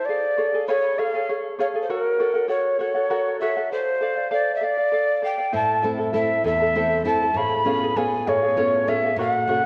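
Heard through a worn, warbling cassette with a drifting pitch and a wet concert-hall reverb, this earthy, wistful Andean folk fragment at 66 BPM in 6/8 sets an airy, distant cane quena with a crisp chiff up front on the melody over a shimmering, fingerpicked charango with double strings, before a full-bodied, fingerpicked nylon-string guitar with audible finger squeak joins the accompaniment at 5.5 seconds.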